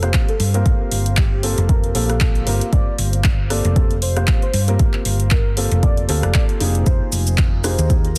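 Smooth and late-night, this deep house excerpt in G minor moves at 116 BPM with a light 16th-note swing, shifting from Gm11 to Fm11 at 6.6 s. An up-front, deep electronic kick anchors an overdriven analog drum machine of handclaps, hi-hat, rim click and shaker, while a dark, round hollow-body electric bass pumps with sidechain compression. A felt-muted upright piano adds soft, boxy stabs with audible action noise, filtering and delay, beneath a velvety, detuned synth lead with chorus and vibrato sitting in the background and a very quiet, evolving granular cloud pad, all within a dense, heavily limited master.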